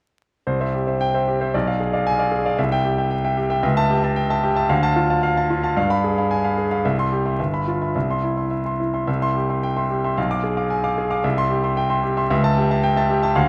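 A dark, vinyl-crackled production with light reverb frames this brief, sparkling passage from a classical virtuoso piano study, in which a solo grand piano, bright, intimate and up front with audible action noise and long sustain, plays with rubato in a two-beat metre from 0.5 to 13.5 seconds, its opening phrase returning at 9.1 seconds.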